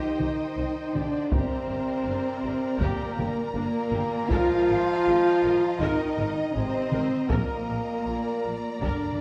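This cinematic, epic orchestral film-score excerpt moves at 80 BPM in a straight 4/4, with a relentless, dark mood built over a progression from C minor through G minor and A-flat sus2 to B-flat. A dark, distant violin section carries the vibrato-laden melody in the background, while a second violin section with a focused, smooth top plays a higher line above it and a clear viola section fills in the accompaniment. The French horn section dominates with warm, tightly held sustained chords, supported by a vintage-toned trombone section sitting further back. Beneath them, a rich, even cello section and a distant double bass section supply the bowed bass, and a taiko ensemble struck with heavy sticks drives the rhythm in a live room. Close, calf-headed timpani on medium mallets add a brief fill at 8.8 seconds, and a wet scoring-stage reverb with a two-second decay lends the whole orchestra a spacious sound.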